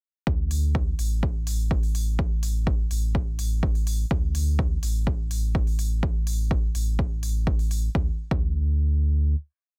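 A clean, dark sine sub bass anchors this deep, hypnotic dub techno piece at 125 BPM, holding long gliding notes between A1 and D2 up front with sidechain pumping, and sustaining through the final note until 9.3 s. A punchy four-on-the-floor electronic kick sits beside it, while a quieter, smooth open hi-hat adds programmed hats and backbeat, both layered and re-recorded in a small room. The mix is dry with little reverb, and the master is dense and heavily limited, with the groove giving way to a single closing note at 7.9 s.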